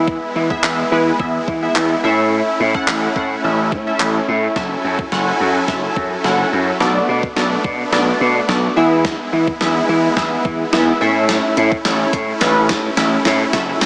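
Energetic and confident, this straight 4/4 dance-pop passage at 107 BPM, cut from a longer piece, rides a chord cycle of E, A, F#m7 and Bm7, with everything except the drums and closing effects pumping from sidechain compression. Round, detuned sawtooth analog keys shimmer with chorus and tremolo over huge, lush supersaw chords, while an overdriven, growly slap bass and a thumpy, sampler-style 80s drum machine with a gated-reverb snare, handclaps and hi-hat sit up front. From 4.6 s a build-up with a drum fill takes over, and at 13.8 s a very quiet, jingly tambourine and a barely audible riser arrive, all heard through light reverb and a thin, small-speaker filter.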